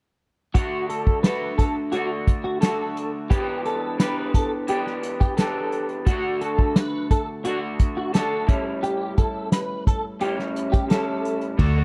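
Dreamy and hazy, this bedroom-pop fragment sets a slightly broken-up, lo-fi electric guitar through a small old amp, treated with subtle chorus and vibrato, beneath a clean, compressed electric guitar that plays a fingered second line with ensemble chorus and slapback echo. An unplugged acoustic drum kit, played up front with bundle sticks, brings a tight kick, a medium-tuned snare and dark cymbals with a rolled-off top over a D, Em7, D, A7 progression. A round, punchy, foam-muted vintage bass arrives only at 11.6 s, and the whole piece carries the small-room intimacy of a dry, close 1970s-style studio.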